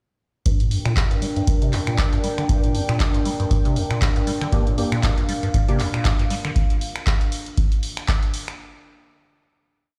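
A four-on-the-floor kick, deep and tape-warm up front, drives this gritty, swung acid house piece alongside a punchy analog drum machine's snaps, claps and hats, while a squelchy, resonant acid bass riff with a filter sweep plays until 6.5 seconds over a moody, detuned sawtooth pad, and a hollow, organ-like stab briefly jabs in at 4.5 seconds, all heard as if through a big sound system in a bare stone room.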